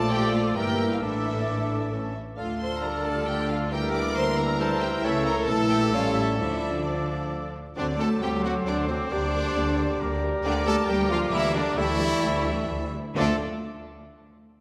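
In a brisk triple metre, this urgent, dramatic fragment of a classical-period symphonic movement puts a close, expressive violin section with vibrato and portamento on the melody, while a distant, very quiet second violin section, an airy flute section with crisp attack, and a solo clarinet and oboe add secondary lines; a lush viola section and mellow bassoon accompany, a French horn section holds sustained chords, a clear trumpet punctuates with soft-attack stabs, and an intense cello section with a bowed double bass section anchor the bass, all carried by a concert-hall reverb over a minor-key progression that comes home on its tonic chord at 13.2 seconds.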